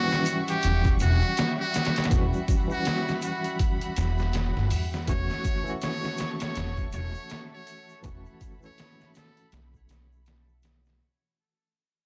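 A muted trumpet with a metal mute carries the melody from the start, its buzzy, breathy tone colored by vibrato, scooped notes, tape echo and a coat of 12-bit sampler grit, before it drops out at 9.5 seconds. This is a melancholic, smoky trip hop cut at 81 BPM in 4/4 with a swung sixteenth-note feel, moving from Em69 to F#m7/E and fading out across its whole length as a fragment of a longer piece. Underneath, a worn, slightly out-of-tune tine electric piano with a barky tremolo voice plays accompaniment through built-in speakers, while a distant, veiled violin section bowed con sordino holds dark sustained chords. The sampler-style drum kit sits up front, pitched down, muffled and overdriven, with a thumpy kick, medium-tuned snare and hi-hat, joined in the background by a small-room tube shaker and group handclap. A woody, growly pizzicato upright bass enters at 0.6 seconds and anchors the low end prominently.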